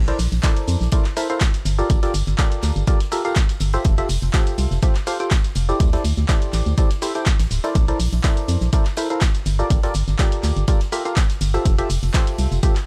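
A punchy, up-front electronic kick drives a lightly swung groove, with an analog drum machine adding handclaps, hi-hat, rim click and shaker, a vintage, band-limited tambourine tucked in the background, and a very quiet, airy big-band drum kit adding hi-hat, ride cymbal and snare. In this bittersweet, soulful piano house excerpt, a hollow, dark organ-like FM bass pumps against the kick while a mellow, percussive organ stab with chorus and delay traces lush jazzy chords. A barely audible riser slips in at 11.7 seconds, all within a small, dark room sound.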